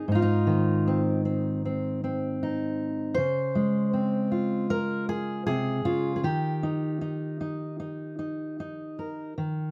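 At an unhurried 78 BPM in a straight 4/4, this short folk excerpt from a longer piece moves with a gentle, pastoral calm. A single fingerpicked steel-string acoustic guitar, a dreadnought with a dark, full-bodied tone, carries everything on its own from 0.0 to 9.7 seconds, spanning Ab2 up to C5. The harmony drifts from Ab to Dbmaj7 at 3.2 seconds and settles on Eb at 6.2 seconds, giving the passage a soft, open-ended feel. The guitar sits up front in the mix, touched by light reverb that lends a little air around the strings. The result is an intimate, quietly reflective moment of solo fingerstyle playing.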